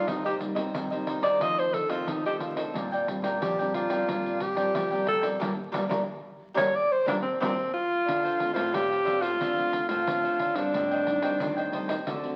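A breathy alto saxophone sits up front and carries the melody in a lively, festive samba and choro, playing a jazz-style solo with light vibrato, soft subtone and scooped notes through the opening 8.1 seconds. Beneath it, a bright cavaquinho picks crisp accompaniment while a nylon-string guitar adds dark, classical fingerpicking in the background, finger squeaks included. A second nylon-string guitar, also fingerpicked in a classical manner, holds down the bass line, and a close pandeiro adds jingly pulse played with soft hands. The band hits an accent from 5.4 seconds, and the harmony then shifts to a new passage that moves from Dm7 to Am7b5. Everything is bathed in a large, wet studio reverb and carries the surface crackle of a very old 78 rpm record, in an excerpt cut from a longer piece.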